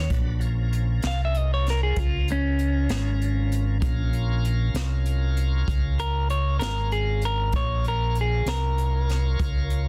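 A dense, heavily limited modern master with little reverb carries this brooding, mournful slow blues in Bb minor at 65 BPM in 12/8, cut from a longer piece, where a twangy, picked clean electric guitar sings the melody up front over a round, punchy fingered bass, a softer bright tonewheel organ holding sustained chords with key click, light overdrive and slow rotary speaker, and an airy jazz brush kit with a high-tuned snare and boomy kick, all resting on a single Bbm chord.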